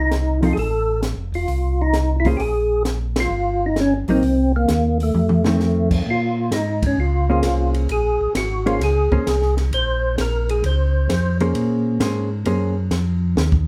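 A swung 4/4 groove at 131 BPM in Bb minor drives this bluesy, soulful soul jazz organ trio excerpt, with a compact cocktail drum kit giving a dry, punchy kick, a high-tuned snare and dark cymbals, while a mellow tonewheel organ carries a round, clean bass line through a slow rotary speaker. A fat, percussive tonewheel organ takes the melody with third harmonic percussion, key click and chorus vibrato, and a compressed hollow-body jazz guitar comps with a picked, shadowy tone through changes moving from F7 to Bbm9. The band hits an accent at 3.1 seconds, a drum fill follows, and the organ launches into a solo at 6.1 seconds, all set back in a room with a wet studio reverb.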